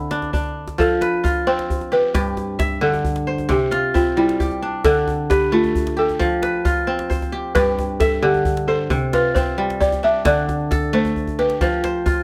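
Balafon and kora open together at 0.0 seconds, joined almost at once by djembe, in a hypnotic West African traditional piece at 89 BPM in 12/8 and F lydian, where the woody, buzzing balafon, struck with soft rubber mallets, carries a smooth, dark solo from 0.8 seconds over the crisp, ringing fingerpicked arpeggios of the up-front kora, while the tight, cracking djembe with metal rattles, played with hard hands, adds a drum fill at 11.2 seconds, captured with close, detailed microphones and light reverb in a passage cut from a longer piece.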